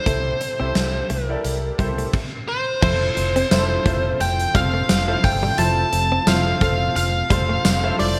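A dark, smooth overdriven lead guitar carries the melody up front in this dramatic, nostalgic 1980s-style pop passage, its line trailed by digital delay. Beneath it, a clear, polished baby grand piano with analog chorus plays the accompaniment, while a compressed, direct-recorded clean electric guitar picks a riff in the background with subtle chorus and delay. A vintage foam-muted fingered bass gives a round, amped low end, and a big rock kit of kick, snare, hi-hat, crash and tambourine drives a lightly swung groove, its punchy kick and medium-tuned snare bathed in gated reverb. An inharmonic FM synth chime enters at 2.5 seconds with a ringing second line, and a very quiet, ethereal pad of detuned, shimmering sustained chords joins at 3.5 seconds. The harmony moves from Am7/C to Fmaj7 at 2.8 seconds, all set in a moderate plate reverb with bright digital-era production, in a section cut from a longer piece.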